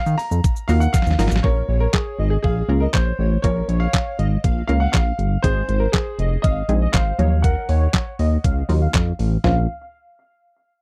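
A glossy, chorused synth bass pumps up front through this energetic, driving dance-pop clip, entering together with a detuned 8-bit drum machine with a thumpy kick, snare, handclaps, hi-hat, shaker and toms, which plays a fill from 0.9 to 1.4 seconds. A warm concert grand piano carries the melody from the start, punchy filtered chord stabs enter at 0.7 seconds, and an airy, dreamy lead with vibrato and tape echo arrives at 1.4 seconds. The chords move through minor and major harmonies, all captured in a dry, close 1970s-style studio sound.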